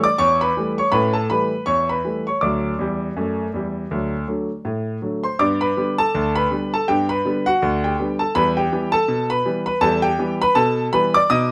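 A clear concert grand piano carries this short ragtime excerpt alone, sounding natural and up front, with a deep bass that anchors its range from D2 up to D#6. The mood is lively and cheerful, set in G major at 81 BPM in 2/4, with a gentle swing on the sixteenth notes that gives the line a relaxed bounce. The harmony opens on A7, moves to G5 over D at 2.4 seconds and D at 3.9 seconds, then settles on G as a new section begins at 5.4 seconds, turning to E minor at 8.4 seconds. A moderate studio reverb adds a touch of room around the instrument. The passage is cut from a longer piece and runs about 11.5 seconds.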